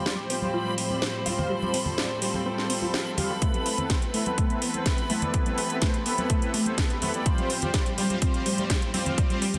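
Progressive house in a dreamy, emotional build-up, where dark, woody bowed strings hold sustained chords and an airy, smooth supersaw plays echoing stabs through a filter sweep, while a detuned, wave-folded unison pluck runs lush chorused arpeggios and a reversed granular texture swells in the background, all pumping with sidechain, over metallic hats, a cracking snare and bright, dry congas, until a punchy, up-front electronic kick enters at 3.4 seconds in a dense, heavily limited mix with recital-hall reverb.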